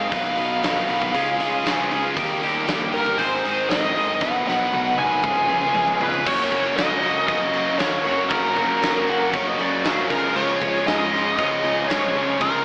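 Driving and sunny, this 117 BPM classic rock excerpt sets a smooth, wah-inflected overdriven lead guitar melody and a bright, double-tracked distorted riff guitar up front over a punchy, bright-cymbaled arena drum kit with a fill from 4.2 to 6.3 seconds, a fuzzy overdriven bass and a very quiet full-bodied acoustic guitar, while a piping tonewheel organ with fast rotary shimmer joins at 2.1 seconds and a compressed slide guitar with analog delay slips in briefly at 9.1 seconds, all bathed in a lush hall reverb with a big arena yet AM radio character.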